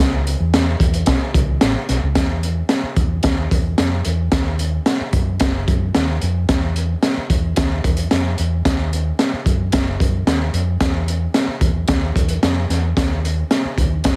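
Joyful and full of warmth, this short cut of uptempo 1960s-style soul moves at 111 BPM in a straight 4/4. A hollow-body short-scale electric bass, fingered and amped, opens the piece alone with a dark, round tone, ranging from F#1 to F#2. At 0.3 seconds a crunchy breakbeat drum kit joins, sitting up front with a punchy kick, a high-tuned snare and hi-hat, its sound gritty, saturated and muffled with a rolled-off top, as if captured in a small room on lo-fi gear. After a brief opening passage, a second section begins at 2.2 seconds and carries through to the end at 14.2 seconds. The mix is dry, with little reverb, and heavily compressed for a radio-style sound.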